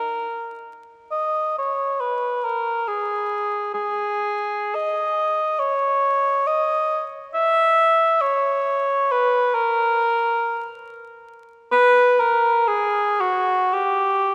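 A mellow cor anglais sings alone and up front in this lonely, meditative classical excerpt in G# minor, drifting freely in a rubato 3/4 around 68 BPM between F#4 and E5, its line bathed in a long church reverb and set in a dark production with a vinyl crackle across the full 14.3 seconds.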